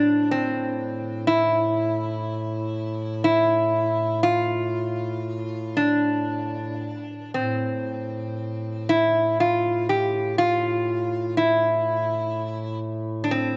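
A metal-body resonator slide guitar leads this mournful, solemn Caucasian lament, its acoustic tone metallic and nasal as it carries the melody between C4 and G4 with fingerpicks and a slide, placed up front in the mix. Beneath it, a duduk holds a low drone on A2 in a folk style, its warm sound shaped by scooped notes. Both parts play throughout, from 0.0 to 13.6 seconds. The music is in A minor and 3/4 at 60 BPM, though the rubato feel lets the pulse breathe freely, and the tuning sits at A4 = 441 Hz. A deep church reverb with a long 3.6-second tail surrounds the dark production, whose muted top end adds to the sombre atmosphere of this fragment cut from a longer piece.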